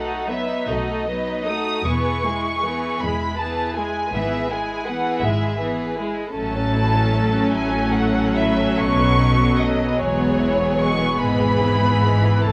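Close, detailed microphones and light reverb give this 12.5-second excerpt a focused, detailed sound. It is a slow, serene romantic movement for string orchestra in 6/8, shaped with rubato, with every section muted and playing con sordino throughout. Up front, the violins carry the melody with soft attack and vibrato, their tone dark yet distant, while a second violin line moves beneath them. Violas supply a veiled accompaniment, and cellos and double basses share the bass, the basses adding a smooth top and light vibrato. The harmony moves through B7, E and E/G#, with a brief turn to F#m7/A before returning.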